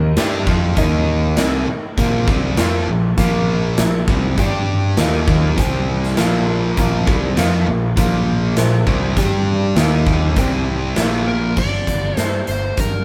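Classic rock with a brooding, driving feel: a sludgy distorted guitar up front and an overdriven semi-hollow guitar in the background carry the riff over a fuzzy, punchy picked electric bass and a big acoustic rock kit with bright cymbals, while a woody, slightly detuned upright piano hangs in the background, until an overdriven slide guitar enters with the melody at 11.3 seconds as the piano and the other guitars fall away by 11.6 seconds.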